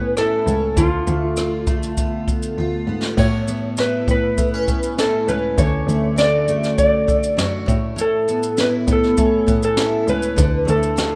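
An electric slide guitar carries the melody from the very start, its slightly broken-up tone played with fingerpicks and sitting up front, over a full-bodied, double-tracked picked steel-string acoustic guitar and a dark bowed cello on the bass line. This is a sunny, carefree acoustic pop passage, cut from a longer piece, at 100 BPM in a straight 4/4 in A major. A jazz brush drum kit joins at 0.2 seconds with dark cymbals, a high-tuned snare, a boomy kick, rim clicks and shaker, and it plays a short fill at 2.6 seconds. The cello adds vibrato and portamento with a smooth, expressive top, while the jumbo acoustic guitar gives a warm, full bed. The harmony moves between Aadd9 and D-based colours such as Dm6, Dmaj7 and Dm, and a moderate plate reverb wraps the rough home-demo mix.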